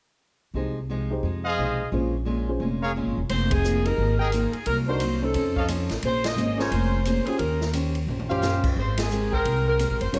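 Picked steel-string acoustic guitar and a woody, pizzicato upright bass open this brassy, sultry big band swing excerpt at 0.5 s, with a concert grand piano adding short-sustained chords over its deep low end. A tight trumpet section with a smooth top cuts in with stabs at 1.4 s, set over minor-seventh harmony. At 3.3 s the dark saxophone section takes the melody, its soft attack and light vibrato sounding roomy yet up front. A swinging drum kit joins at the same point, with a punchy kick, medium-tuned snare, hi-hat, ride, crash and toms in a natural studio room. The band lands a few shared accents and the drums play a brief fill as the chords move through lush extended voicings under a light reverb, before the excerpt is cut off.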